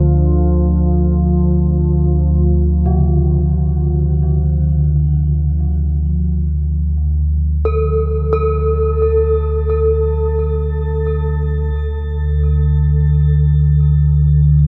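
Drenched in a huge, echoing reverb that evokes a vast space, this ominous, unsettling dark ambient drone excerpt rests on a deep, rumbling up-front drone of sustained, slow-attack triangle and sawtooth tones, while a gamelan-type bronze metallophone, struck with a wooden mallet, rings out metallic arpeggios with shimmering beats from its paired tuning through delay and shimmer reverb from 2.9 to 11.9 seconds.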